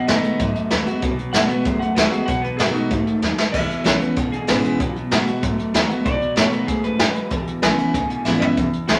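A twangy, slightly broken-up electric guitar solo leads this upbeat, rollicking rockabilly excerpt in E major at 191 BPM, over a full-bodied picked acoustic guitar up front, a second electric guitar riffing low in the background, a woody, thumpy pizzicato upright bass set back in the mix, and a roomy brush drum kit with a boomy kick and dark cymbals that plays fills at 3.2 and 8.3 seconds, all bathed in wet studio reverb.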